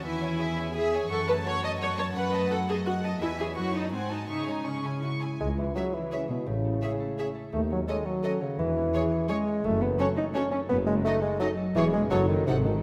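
A moderate scoring-stage reverb gives this cinematic excerpt a sense of space. It has a mischievous, sneaky mood at 170 BPM in 3/4, in C# minor. From 0.0 seconds, close, bowed string sections play sul tasto with soft attacks. A rich violin section with light vibrato carries the melody, a second, floating violin section adds a line beneath it, and the violas fill in the accompaniment. A dark cello section holds the bass while a bright concert harp rings out fingerpicked arpeggios. At 5.4 seconds the texture deepens: a mellow bassoon steps up front, and a dark double bass section and a very quiet tuba join the low end. From 5.8 seconds a distant, roomy French horn section sustains soft chords. The harmony circles through C#m, F#m and diminished chords, twice leaning on a tense G#7b9.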